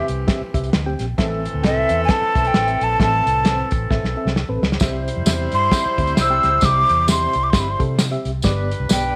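Warm and joyful, this swung 1960s-style soul excerpt sets an expressive, breathy jazz flute with vibrato and a soft attack up front over a distant, roomy horn section, a reedy, slightly out-of-tune electric piano with fast tremolo, a round, foam-muted fingered bass and a punchy, dark-toned soul drum kit that plays a fill at 3.9 seconds before a jingly, saturated tambourine joins at 4.8 seconds, with light studio reverb around the ensemble.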